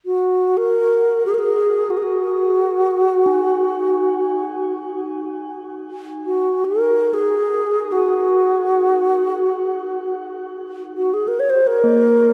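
Spacious and meditative, this world meditation music drifts in free time in Eb minor, in a short passage cut from a longer piece. A wooden-headed alto flute carries the melody from 0.1 seconds, sitting up front with an airy, warm tone, vibrato, tongued notes and an unsteady delivery, its line trailed by delay and a shimmer reverb. At 3.3 seconds a bronze singing bowl, struck with a wooden striker, enters low in the mix as a texture, its bright, metallic ring carrying a slow beating and its own shimmer halo. Both parts continue together until the close at 12.3 seconds. The whole mix is soaked in a huge ambient reverb with a 7.8-second decay, giving the recording a dreamy, floating sense of space.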